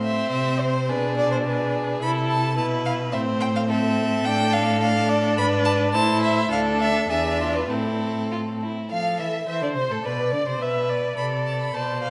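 The cello stands out up front, its bowed bass line sung with vibrato, a soft attack and expressive portamento beneath a spirited, lively string quartet movement in the classical-period style. The piece moves quickly at 106 BPM in 2/4 with a rubato feel in A minor, tuned to A4 = 439 Hz, and this 12-second passage is cut from a longer work. The first violin carries the melody in a rich, close tone with light vibrato and a smooth, even bow. The second violin shapes a focused second line, while the viola fills in the accompaniment with a similarly focused sound and a smooth top. All four players sound together throughout, their harmony moving from Am through G#dim and E7 before settling back on Am, all bathed in the wet reverb of a scoring stage with a 1.7-second tail.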